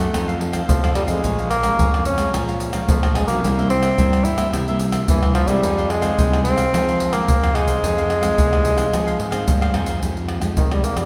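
Awash in the deep reverb of a church or concert hall, this lively, nostalgic samba-choro excerpt in F minor moves at 109 BPM in a straight 4/4 over F7, Bbm7, C7 and Fm7. An up-front bassoon with light vibrato carries the classical-style melody, while a crisp, picked cavaquinho and a full-bodied, fingerpicked nylon-string guitar sit in the background. A punchy, overdriven fuzz electric bass and a live, up-front percussion section of tube shaker, deep surdo, pandeiro and tamborim complete the arrangement. The cavaquinho stops at 10.0 seconds as the bassoon takes a brief solo.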